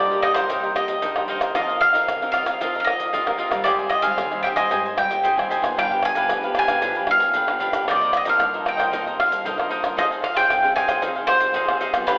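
A warm, picked bowl-back mandolin sits up front with the melody, its double strings ringing between B4 and Ab5 in this 12.2-second excerpt of a yearning, nostalgic samba and choro piece at 114 BPM in a straight 4/4. A crisp, bright cavaquinho and a fingerpicked classical nylon-string guitar play accompaniment beneath it, while a woody, thumpy upright bass, played pizzicato, stays dark and in the background. Tube shaker, pandeiro, tamborim and a deep surdo come in at 0.1 seconds, sounding as if captured in a small room. The harmony moves from Cm7 through F7sus4, Abmaj7 and a tense G7b9b13 before returning to Cm7 and settling on Fm7. A long, wet recital-hall reverb surrounds the recording, yet the sound itself is narrow and telephone-like.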